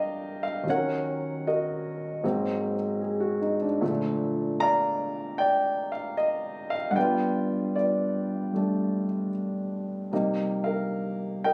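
Solo jazz with a cool, smoky mood and a swung feel in four, as a lone grand piano carries this 11.5-second fragment of a longer piece, its intimate, natural tone sitting up front with audible action noise, captured on a phone in a large studio whose moderate, club-like reverb surrounds it.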